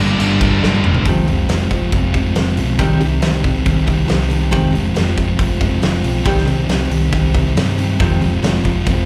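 A dark fuzz guitar riff up front, a brighter fuzz guitar and a scooped, double-tracked high-gain guitar in the background, and an overdriven fingered bass open this cathartic, dark quiet-loud alternative rock excerpt at 138 BPM in 4/4, joined at 0.2 seconds by a punchy, roomy drum kit with bright cymbals whose fill from 0.6 seconds leads at 1.1 seconds into a section where the high-gain and bright fuzz guitars have stopped and a full-bodied, fingerpicked jumbo acoustic guitar with audible finger squeak plays arpeggios behind the dark fuzz riff, all heard as a live gig through a club PA, with the chords moving from Gm through Fm and Cm to a closing Fm7.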